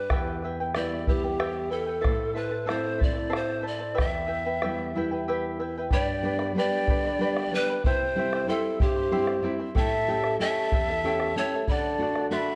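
Melancholic and earthy, this Andean folk excerpt moves at 62 BPM in a straight 6/8 in E minor, with a breathy bamboo pan flute carrying the melody up front, its tongued notes marked by vibrato and chiff, over a fingerpicked charango whose shimmering double strings include some octave-doubled courses. A deep classical nylon-string guitar, also fingerpicked and up front, anchors the harmony, while a dark, deep bombo from a small room supports the pulse, and at 5.9 s a wooden, end-blown large quena enters with a second line in straight tone and crisp attack. The harmony runs from Em and Am through G, C and A7 to D, all set in a wet recital hall with a dark production.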